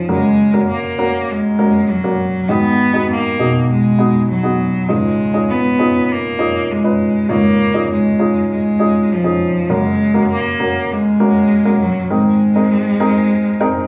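A bowed cello and a dark baby grand piano begin together in this hopeful pop excerpt in Db mixolydian, moving at a straight 100 BPM in 4/4 over chords that travel from Gb through Abm7 and Dbadd9 to Abadd9. The single cello carries the melody with a rich, focused tone and vibrato, while the mellow, intimate piano accompanies with short sustain and audible action noise. The players sound live together in a large studio room with a wet reverb that lends the whole a warm, natural ambience.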